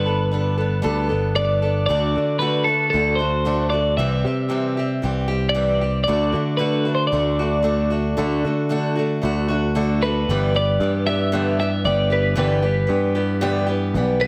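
A small room's light reverb frames this brief cut from a longer folk rock and heartland rock piece, nostalgic and jangly in a straight 4/4. A bright, twangy twelve-string electric guitar carries the melody through spring reverb and slapback echo, while a boxy old ladder-braced acoustic guitar, picked up front with audible finger squeak, supplies the accompaniment. A round, amped picked electric bass sits forward beneath them as the chords move from Gadd9 through D and C before settling on G6 at 10.3 seconds.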